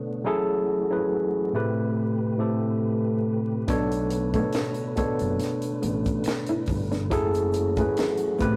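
R&B with a neo-soul lean, this late-night, introspective fragment moves at an unhurried 70 BPM in B minor, with a gentle swing on the sixteenths. A worn, slightly out-of-tune tine electric piano sits up front through a combo amp, voicing the chords beside a clear tonewheel organ whose slow rotary speaker, chorus vibrato and key click add a soft shimmer. The harmony drifts from F#m9 to Am9 before settling on Bm9 at 3.7 seconds, where the rest of the band enters together. A growly, punchy fingered electric bass holds the low end, a dry, tight funk kit with a high-tuned snare and tight kick sets the pulse, and a thumb-plucked flamenco guitar adds a second line in the background. Egg shaker, finger snaps and group handclaps sound distant, as if from a large room. The whole recording has a rough rehearsal-room character, with tube saturation, vinyl crackle and a wet stone-room reverb, and it returns to F#m9 at 7.1 seconds before the cut.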